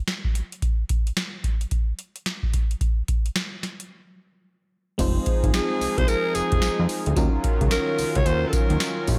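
A swung sixteenth-note groove at 110 BPM in 4/4 drives this punchy, bouncy new jack swing excerpt, tuned slightly flat to A4 = 436 Hz. A booming analog drum machine opens alone with a deep kick, crisp snare, metallic hi-hats, crash cymbal and tambourine, sitting up front with gated reverb and a tape-warm tone. After a break at 3.9 s, the harmony arrives at 5.0 s: a fat, thick analog bass with a filter pluck, a glassy FM electric piano with a bell-like attack and chorus, and a bold, brassy detuned pad, also chorused, holding sustained chords. The changes move from Fm7 to Ebm9. A raspy, gritty alto saxophone takes the melody from 5.5 s, up front and pop-styled with vibrato, scooped notes and a digital delay. The overall sound is close and dry, with little room reverb.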